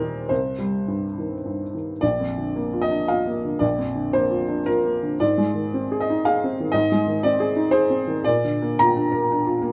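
A felt-muted upright piano carries this short, melancholic cut from a longer neoclassical minimalist piece, playing solo from start to finish across a span reaching from Bb1 to Bb5. Its tone is soft and intimate, with a thin felt layer, a slightly boxy body and audible action noise that keeps the instrument close and up front. The playing moves in a reflective, rubato three-beat lilt, and the tuning sits at A4 = 445 Hz. A brief opening phrase over Cm gives way at 2.0 s to a longer passage that drifts through Bb and Ab before returning to Bb near 8.2 s. Moderate studio ambience adds a touch of room around the piano while preserving its quiet closeness.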